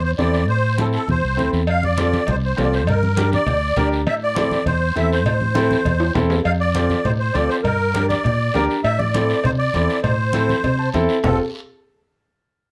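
A reedy musette accordion carries the melody up front in this sunny, danceable cumbia, its shimmering wet tuning bathed in plate reverb. Set at a brisk 201 BPM in straight 4/4 and F major, the short passage cut from a longer piece opens with a punchy, growly fingered electric bass alongside the accordion. An intimate upright piano joins at 0.2 seconds with woody tone, audible action noise and long sustain, together with congas and a raspy guiro sitting in the background. Ringing metal-shell cowbell and timbales, vintage and band-limited, arrive at 1.7 seconds, and a drum fill at 6.0 seconds leads into a new section before a piano fill closes it at 10.6 seconds. The harmony cycles through Am, F and Gm in a dark, warm production with moderate studio reverb.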